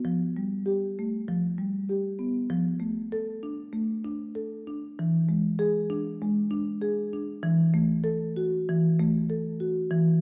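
A contemporary classical fragment for solo marimba, hypnotic and reflective, moving at 97 BPM in 4/4 with a rubato feel. The soft-mallet marimba plays alone from 0.0 to 10.2 seconds, sitting up front with a woody, round, mellow tone in the range from E3 to A4, as its harmony drifts from Fadd9 through G7/F, F6 and E7 to F#m7/E. A dark production and a lingering recital-hall reverb surround the instrument.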